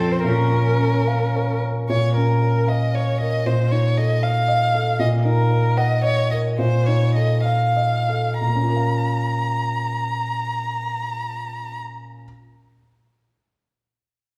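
A concert grand piano with deep bass, an up-front, close violin singing the melody with vibrato, soft attack and portamento, and a rich, focused cello heard distantly in the background until 1.5 seconds open this dramatic, urgent passage cut from a quick classical-period piano trio movement in Bb minor and rubato 6/8 at 60-79 BPM. It moves through Bbm, F7/Bb and Ebm/Bb, slows between 4.2 and 8.4 seconds, and leaves the warm piano sounding last through 12.2 seconds in a reverberant recital hall.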